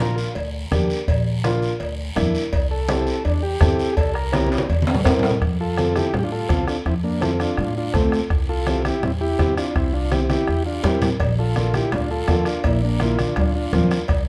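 Cumbia at a brisk 166 BPM in F major, this joyful, danceable excerpt from a longer piece opens with a transistor combo organ solo that carries the melody, its mellow, clean tone touched with light vibrato and placed up front. A dark upright piano with long sustain supplies the accompaniment, while a woody, thumpy pizzicato upright bass on gut strings anchors the low end across the whole cut. The percussion is layered: a raspy guiro sounds distant in a large room, bright low-tuned congas sit in the background, and a soft-beatered bombo lands close and dry. Ringing metal-shell cowbell and timbales play at the start and return at 11.2 seconds, with drum fills around the section change at 5.4 seconds and again near 10.1 seconds. The chords move from Bb through C7 into F and C before settling back on Bb, all within a moderate large-studio reverb.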